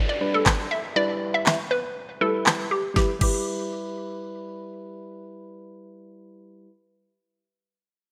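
Dance-pop at 120 BPM in E minor, this bittersweet yet confident excerpt moves from G to Em beneath a bright 1980s-style digital sheen and moderate lush hall reverb, with a background downlifter sweeping through the first 3.0 seconds. Up front, a hollow, bouncy square-wave pluck with detuned layers, a sub octave and a noise layer carries the melody through chorus, delay, low-pass filtering and sidechain pumping, while soft, round electric-piano-like synth keys supply mellow, chorused accompaniment that lingers alone until 6.7 seconds. A layered electronic pop drum kit with a knocking kick, fat snare, handclaps and crash cymbal punches in from 0.5 to 3.4 seconds.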